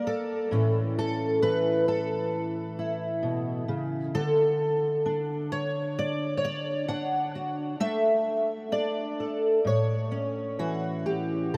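In a straight, unhurried 4/4, a lone fingerpicked steel-string acoustic guitar carries this hopeful, peaceful folk fragment, cut from a longer piece, moving from Gm through A, D and Asus4 before settling back on A. The guitar sits up front with a dark, concert tone, spanning A2 to F#5, and an analog chorus colours its strings. A huge ambient reverb with a 4.4-second tail soaks the mix in a dreamy haze across its 11.6 seconds.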